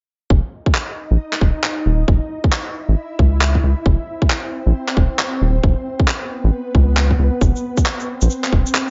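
A rubbery, hollow square-wave bass with a resonant filter sweep and a tight, tape-warm electronic kick open this skippy, soulful two-step UK garage excerpt at 0.3 s, moving at 135 BPM with swung sixteenths, joined by up-front layered handclaps and an ethereal, detuned pad whose chorused, reverb-washed chords pump softly underneath, before a grainy acoustic tube shaker slips in close at 7.4 s near the end of a dry mix with a rounded, muted top.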